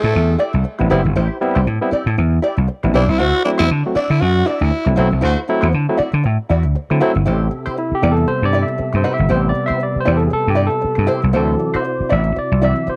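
Swung sixteenths at 118 BPM drive this funky A dorian groove in 4/4, built on a punchy, up-front slap bass, a dark wah-treated hollow-body jazz guitar, and barky, lightly overdriven tine electric piano stabs, while a raspy, growling tenor saxophone with tape echo carries the melody until 4.9 seconds. A brief band accent arrives at 5.2 seconds with a short burst from a warm horn section, and from 7.3 seconds the electric piano takes a solo over a shift from D9 to Am7, backed by a mellow tonewheel organ's sustained chords swirling through chorus vibrato and a slow rotary speaker in the background. The sound is dry and close, like a small 1970s-style studio room, and the piece is cut from a longer performance.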